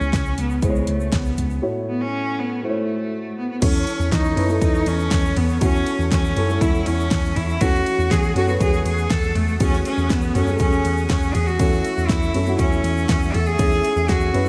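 A clear, smooth cello carries the melody up front with vibrato, riding over a dark, woody upright piano touched with subtle chorus and a round, hollow-body picked electric bass in this hopeful, anthemic piano-driven pop excerpt. A layered pop drum kit with a punchy kick, a fat snare and metallic hats drives it in straight 4/4, while a grainy egg shaker sits close and dry in the background. After a break at 1.6 seconds, a lightly overdriven tonewheel organ enters at 3.6 seconds with key click, chorus vibrato and a slow rotary speaker, all of it soaked in a lush hall reverb for a dreamy mix.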